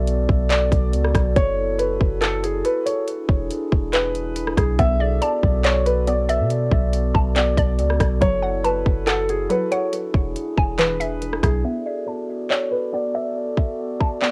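Atmospheric cloud-rap hip hop in B dorian at 140 BPM with a half-time feel, this spacious, hazy passage from a longer piece circles Bm7, F#m7 and E7 over a dry, cassette-recorded home sound. Glassy, ethereal glass harmonica chords pump against the sidechain under a low-pass filter and tape haze. A felt-muted upright piano carries a mellow, intimate melody through analog delay. Up front, a produced trap kit with a hard-clipped kick, metallic hats, handclaps and rim clicks sits alongside a deep, round 808-style bass that drops out at 11.6 seconds. From 4.8 seconds, a hollow, bouncy square-wave pluck adds detuned, chorused arpeggios with ring modulation and a filter sweep.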